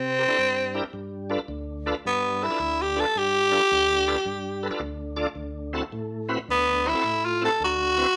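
Swinging in 4/4 at 108 BPM, this gritty, soulful blues in G major is cut from a longer piece and runs just over 8 seconds, moving through C9, G9 and D9 chords. A raspy, growling tenor saxophone takes the solo up front throughout, its jazz-style lines touched with vibrato. Beneath it, a bright tonewheel organ shouts a full accompaniment with key click, light overdrive, chorus vibrato and a slow rotary speaker, the whole band captured live in one room with light reverb.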